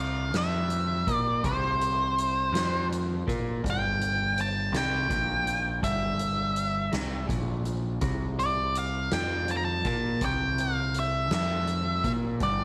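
Hazy and hypnotic, this short psychedelic rock cut moves at a slow 55 BPM in 6/8 in C mixolydian, with a dark, up-front octave-fuzz lead guitar carrying the melody through distortion and slapback echo, a slightly broken-up electric guitar through a small old amp playing a flanged riff, a growling, punchy overdriven bass, and a soft-mallet drum kit with a boomy kick entering at 0.3 s, all set in light studio reverb as the chords move from C to Gm6 at 3.6 s and back to C at 8.0 s.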